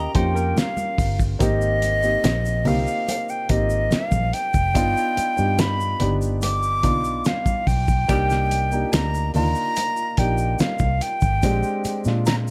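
A breathy, close-miked flute carries the melody over an intimate grand piano, a round, foam-muted electric bass and a dark hollow-body guitar riff with analog chorus that stops at 1.4 s, in this lush 1970s-style soul excerpt at 72 BPM in 4/4. A muffled, thuddy drum kit with a fat snare and tight kick sits up front from 0.1 s. A grainy shaker in the background and very quiet, high-tuned congas join it in a small room ambience. The chords move from Eb9 through Abmaj9, G7b13 and Cm7 to Bb13, and a clear vintage horn section adds a brief background stab at 8.1 s.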